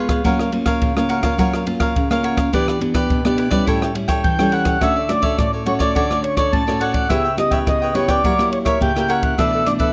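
Samba and choro in D major at 105 BPM, sunny and joyful, this excerpt opens with a crisp, picked cavaquinho and a bright, full-bodied nylon-string guitar, fingerpicked up front with audible finger squeak, alongside an acoustic jazz kit of boomy kick, ride with dark cymbals and rim click. At 4.2 seconds a reedy, mellow accordion takes the melody, close-miked and dry with a slapback echo, and from 4.8 seconds the harmony moves from Dmaj7 through C#m7b5 and F#7b9 to Bm7. The whole has the intimate feel of a close 1970s-style studio recording in a small room.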